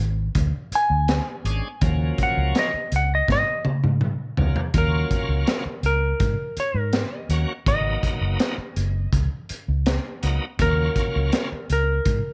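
A clean lap steel guitar, played with fingerpicks and a slide, carries the melody from 0.8 s, its dark tone sitting up front in plate reverb before it takes a solo from 4.7 s through the end of this section cut from a longer piece. The setting is a smoky, mournful straight-eighth soul blues in Eb minor at 82 BPM in 4/4, moving through Bb7#9, Ebm7 and Abm7 chords. Underneath, a vintage foam-muted fingered electric bass opens with a round, punchy, amped sound, joined at 0.3 s by a crunchy breakbeat kit of hi-hat, kick, snare and toms. The drums are gritty and saturated, with a high-tuned snare, a tight kick, a rolled-off top and a studio-room sound, and a drum fill leads into the solo. A bright tonewheel organ sits lower in the mix, adding shouting, lightly overdriven accompaniment with key click through a slow rotary speaker, and light reverb gives the track a touch of space.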